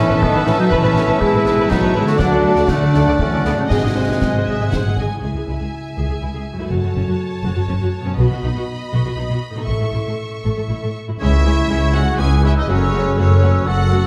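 A focused, close violin section carries the melody in this swashbuckling, adventurous heroic film-score cue in 3/4, over lush background violins and cellos, smooth background violas, warm double basses and a ringing harp's arpeggios, while a dark clarinet, airy very quiet flutes and an oboe add second lines, mellow, roomy horns and soft trombones hold chords, and a distant trumpet punches stabs, with concert bass drum and snare with bright cymbals driving the opening until 4.9 seconds, a barely audible round timpani touch at 5.2 seconds, and winds and brass returning at 11.2 seconds, all in a moderate scoring-stage reverb.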